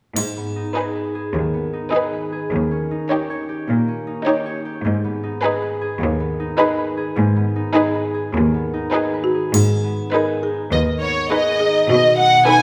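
A rich, lush violin section carries an expressive, up-front second line through this sneaky, quirky film cue in G# minor at 102 BPM, joined by a smooth, even violin melody, focused violas, clear cellos holding the bass and a ringing concert harp picking out arpeggios. A woody, rustic marimba with medium mallets joins the melody from 9.2 s, while a bright triangle chimes at the start and again at 9.5 s. The bowed strings sing with vibrato over harmony that moves from G#m to D#7 and back, turning to B7 at 11.9 s, all set in the wet reverb of a scoring stage.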